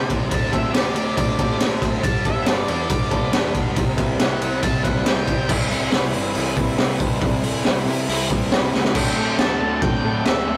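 A straight four-four indie rock groove with a carefree, upbeat mood is driven by a gritty, up-front garage drum kit with a boomy kick and high-tuned snare, which throws in a fill at 8.7 seconds, while a dark octave-fuzz lead guitar solos over the opening 5.5 seconds and returns at 9.0 seconds, set above background riffs from a slightly broken-up, lo-fi electric guitar through a small old amp and a bright fuzz guitar, plus an overdriven, fuzzy picked bass, all captured in a rough rehearsal-room sound with light reverb and warm saturation.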